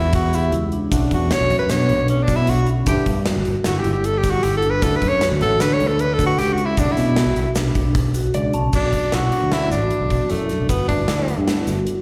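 A driving, brooding progressive instrumental in B minor, this excerpt from a longer piece moves at 154 BPM in an uneven 5/4 with a straight feel. A breathy tenor saxophone sits up front and solos for the first 8.7 seconds, its jazz-style phrasing full of vibrato and scooped notes over chords that pass from Em7 through Bm7, G6 and Dmaj7. Beneath it, a growly, overdriven fingered electric bass drives the low end, while a dark vibraphone with medium mallets spins ringing arpeggios shaded by a fast motor vibrato, slapback echo and tape echo. A gated 80s drum kit adds a polished, airy punch with bright cymbals, a medium-tuned snare and a tight kick, and a grainy tube shaker ticks quietly in the background. A clean, compressed hollow-body jazz guitar comps in the background from 0.9 seconds and slips in a brief fill just before the second section begins at 8.7 seconds. The whole performance comes across as a live gig heard through the venue's PA, with recital hall reverb and a faint mains hum.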